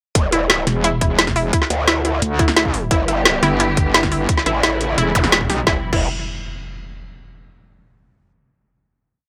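Set in a small room with light reverb, this short, dark technical drum and bass piece hits hard and mechanical from its first moments at 174 BPM in a straight 4/4. The drop opens at 0.2 seconds: a tight electronic kick and a layered, up-front kit with a woody snare, metallic hats and crash drive the broken beat, while a saturated growl bass pumps against the kick and a second, FM-built wobble bass with chorus joins to answer it, both changing their wobble speed as they move between E1 and D2. Above them, a detuned, wave-folded unison pluck repeats a 3-step loop that drifts against the bar, pumping and trailing tape echo. From 2.9 seconds, a lush, bowed string section with vibrato and portamento sits in the background, holding sustained chords as the harmony moves from G to A. Electronic zaps and impacts arrive near the end, carrying the track through its final chord at 5.7 seconds.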